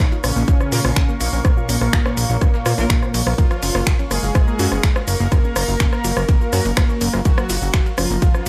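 Melodic techno at 124 BPM in a straight 4/4, this hypnotic, dark excerpt from a longer piece moves from Bb minor to Gb major seventh at 3.4 seconds. A punchy, tape-warm electronic kick sits up front, re-recorded in a small room, while a deep house kit adds smooth hi-hats, finger snaps, ride, rim clicks and shaker, and a very quiet, gritty sampler-style kit contributes compressed hi-hat, ride and a medium-tuned snare. A fat, saturated sawtooth bass with a filter sweep and tube saturation anchors the low end, pumping against the kick. The lead is a bold, brassy analog synth brass melody with chorus and dub echo, joined from 0.7 seconds by very quiet, detuned brass stabs. In the background, a warbling, lo-fi, nasal pluck spins arpeggios through chorus and dub echo, and a moody, evolving ambient pad with a sub octave holds sustained chords in its built-in reverb, both breathing with sidechain pumping in an otherwise dry mix.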